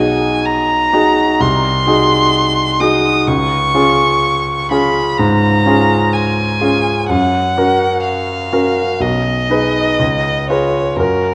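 In a rubato 4/4, this tender, serene romantic duo fragment, cut from a longer piece, pairs a single bowed violin carrying the melody with vibrato and a focused, clear tone against bright, brilliant grand piano accompaniment, both parts up front and playing throughout its 11.3 seconds. The harmony moves from G#m7/B through C# and F# before settling on C#7 at 10.0 seconds. A moderate concert hall reverb surrounds the duo, and the sound carries the worn, warbling pitch drift of old cassette tape with a dulled top end.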